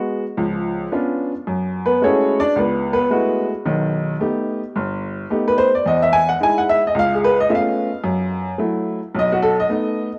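Solo jazz with a relaxed swing feel, this short piece cut from a longer work features a clear, woody, boxy upright piano sitting up front and playing alone through chords such as C#7b9, F#m9, Baug7 and Emaj7, set in a moderate spring reverb with the homespun character of a cassette home recording.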